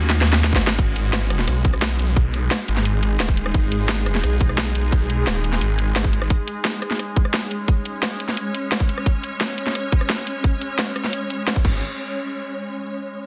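A straight 4/4 pulse at 174 BPM drives this dark, tense technical drum and bass excerpt in G# minor. It opens with a drum fill before an overdriven, up-front kit with a cracking snare and bright hats settles in, joined by a tight, layered electronic kick from 0.5 seconds. A snarling sawtooth bass, growling, distorted and compressed with sidechain pumping, dominates the low end until 6.3 seconds and returns briefly at the close, while a swarming, granular drone of sustained chords with a slow attack evolves underneath in its own reverb, all pressed into a dense, heavily limited master with light reverb.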